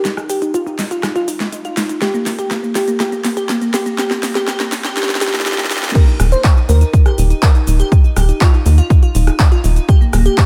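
Light reverb and a high-pass filter give this progressive house excerpt an airy, lifted sound. It is uplifting and expansive, in Eb major at 122 BPM in a straight 4/4, and it opens on an Eb5 chord. From the start a glassy wavetable pluck spins arpeggios between Bb3 and C5, its crystalline, bright tone touched by chorus and carried on dub echo and sidechain pumping, while a filter sweep moves across it over a six-second build-up. Under it, a big-room dance drum kit, re-recorded in a small room, plays a fill with a huge snare, metallic hi-hats, handclaps, rim clicks, shaker and crash cymbal. At 6.0 seconds the drop arrives with a punchy, overdriven electronic kick up front. Almost at once a tight sequencer bass joins it, dark and driving between Eb1 and Eb2, its sawtooth and square-wave tones edged with ring modulation and pumping with the sidechain.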